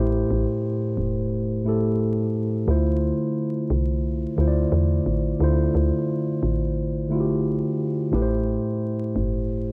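A mellow tine electric piano, up front and colored by cassette tape and a low-pass filter, opens together with a soft, round FM bass at the very start of this reflective, hazy lo-fi hip hop fragment in D minor, swinging at 88 BPM over chords that move from Am7 to Dm7 and back to Am7, set in light reverb with the vinyl crackle of a home cassette recording.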